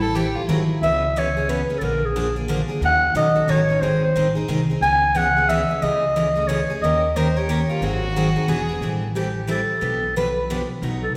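Acoustic string swing in the jazz manouche style, this bittersweet, swinging 3/4 passage at 180 BPM in C# minor is cut from a longer piece and set in the wet reverb of a recital hall. A raspy, growling clarinet carries the melody up front with light vibrato and scooped notes, over a bright, full-bodied picked steel-string acoustic guitar and a woody, thumpy pizzicato upright bass on gut strings. A bowed violin, airy and intimate with soft attack, adds a brief second line at the start and again from 7.7 to 8.8 seconds, just before the music shifts into a new section.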